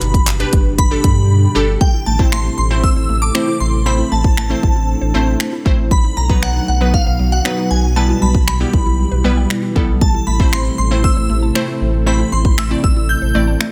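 A glossy, lightly reverberant electronic sheen opens this confident, driving dance-pop excerpt in A minor, moving at 117 BPM in a straight 4/4. A punchy, up-front electronic drum kit of kick, hi-hat, handclaps and finger snaps anchors the groove, while a deep sine-and-triangle sub bass with an added octave pumps against the kick. Above it, a crystalline, detuned wavetable pluck with a filter sweep carries the accompaniment, and an ethereal sawtooth pad with a noise layer and slow attack sits mellow in the background, both breathing with sidechain pumping. A shimmering FM bell with ensemble chorus and digital delay floats the dreamy melody high over the mix. After a brief silent gap from 1.3 to 1.8 seconds, a very quiet, woody mallet-like pluck enters with arpeggios as the chords move from A minor through B and E minor over B before returning to A minor.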